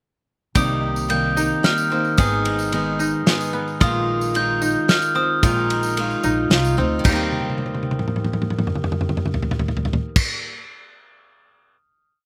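A loose, up-front indie drum kit with a fat snare and tight kick drives this short, anthemic indie folk piece in Eb major, moving in a hopeful 3/4 at 111 BPM. A dark, bell-like glockenspiel struck with brass mallets carries a smooth, motif-based melody that rings until 6.5 seconds. Beneath it, a fingerpicked dreadnought guitar with fresh strings plays a full-bodied alternating-thumb pattern, while a boxy parlour guitar strums eighths in open chord shapes through a slapback echo. A mellow koto played with fingerpicks adds a dry ostinato of arpeggios, also touched by slapback echo, and a thumpy pizzicato upright bass with steel strings lays down a woody dotted figure. A jingly tambourine keeps an even pattern low in the mix as the pre-chorus moves through Cm7, Abm and Bb7sus4. At 7.1 seconds the arrangement settles onto a final Eb6 chord, with a drum fill entering at 7.3 seconds, and the kit rings on alone to 11.8 seconds, all captured outdoors with little reverb.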